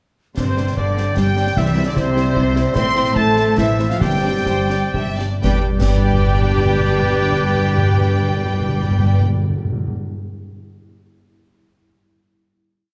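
This is a cinematic, heroic adventure film score in 3/4 and G major, with a heroic, soaring mood and a tempo that moves between 119 and 152 BPM, slowing from 2.2 to 5.4 seconds. A warm, smooth violin section carries the melody with light vibrato, doubled at the octave by a pure, crisp flute group and by a rich, distant cello section. A bright, tight trumpet section adds stabs that double the tune, while a mellow, roomy French horn section holds sustained chords. Oboe, clear clarinet, a second violin line and very quiet violas fill in sustained chords and repeated notes beneath them, with dark, woody double basses marking the beats. A very quiet, ringing concert harp plays broken-chord arpeggios that carry on to 10.1 seconds. Snare drum, clash cymbals and bass drum drive a marching pulse until 6.0 seconds, timpani enter at 4.0 seconds with round single strokes on G, and the theme, set in a moderate scoring-stage reverb, resolves onto a held final G chord from 5.4 seconds.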